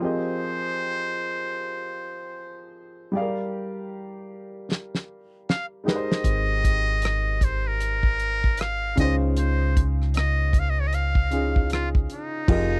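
A dry, close 1970s-style studio sound frames this sultry, introspective R&B and neo-soul excerpt at 77 BPM in F minor with a swung 16th-note feel, where a woody, smooth vintage upright piano accompanies a buzzy, breathy, jazz-style trumpet in a metal mute playing the melody up front over chords moving from Fm11 to Dbmaj9, a damped 70s drum kit with a fat snare, tight kick and rim clicks enters with a fill at 4.7 seconds, and a deep, round, punchy fingered electric bass joins at 6.2 seconds.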